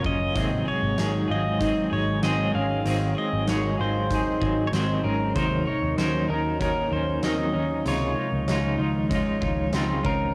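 Dream pop with an ethereal, dreamy mood, moving at 96 BPM in a straight 4/4, heard here as a short cut from a longer piece recorded at home on cassette with light reverb and a studio ambience. A clean, twangy pedal steel guitar carries the melody with fingerpicks, slide and volume swells, coloured by cassette tape and tape echo. Beneath it, a bright, up-front semi-hollow electric guitar plays picked accompaniment through tremolo and lush chorus, while a dark, fingered electric guitar adds compressed arpeggios with subtle chorus and tape echo. A warbling, nostalgic pad of detuned sawtooth and triangle tones sits in the background with slow-attack sustained chords, soaked in chorus, phaser and its own reverb. An oversized, low-tuned drum kit brings a boomy kick, fat snare, hi-hat and tambourine with a gritty, pumping big-room sound, and a round, foam-muted picked bass with tube saturation enters at 0.1 seconds. 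The harmony moves from Ab7 at 0.4 seconds to Ebm7 and then Dbmaj9 at 7.9 seconds.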